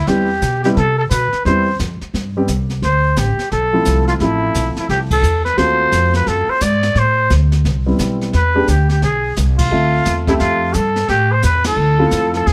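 A raspy, growling trumpet carries the melody with vibrato and scooped notes in this moody, late-night small-group jazz passage with a swinging bop feel. A woody, thumpy pizzicato upright bass sits up front beside it, while a baby grand piano comps underneath and a brushed drum kit with dark cymbals and a boomy kick rides quietly in the background. The band hits accents together at 5.1, 9.5 and 11.6 seconds, all captured close and detailed with a light touch of reverb.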